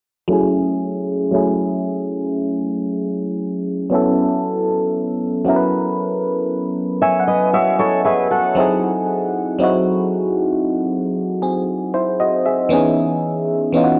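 A glassy FM electric piano anchors this short, moody contemporary R&B excerpt, its bell-like attack and noise layer sitting up front through chorus, phaser and a low-pass filter as it carries the accompaniment from 0.3 to 14.0 seconds. The tempo is a slow 58 BPM in a straight 4/4, in F# dorian, and the longing harmony moves from F#m7 to B9sus4, then G#7b13, and settles on C#m7. A filter sweep runs across the whole passage, and the electric piano adds a fill from 6.5 to 8.6 seconds. Briefly, from 7.0 to 8.8 seconds, a dark fingerpicked steel-string acoustic guitar steps forward with arpeggios, softened by a low-pass filter and touched with digital delay. A lush hall reverb surrounds the parts, and a worn cassette-tape character adds a warbly pitch drift to the whole sound.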